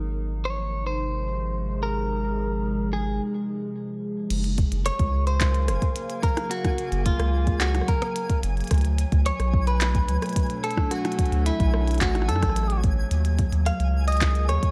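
Set in a digital ambience, this intricate, playful IDM excerpt at 109 BPM opens with a warbling, detuned lo-fi pad sustaining chords through chorus, phaser and 12-bit sampler grit, over a round, deep analog bass with tube saturation and a bright, picked clean electric guitar melody with tape echo. After a break at 3.2 seconds, a glitchy kit of clicky hats, handclaps, rim clicks and blips enters at 4.3 seconds, joined by a soft electronic kick at 4.6 seconds, while a twinkling granular shimmer sits faint in the background from 4.8 seconds.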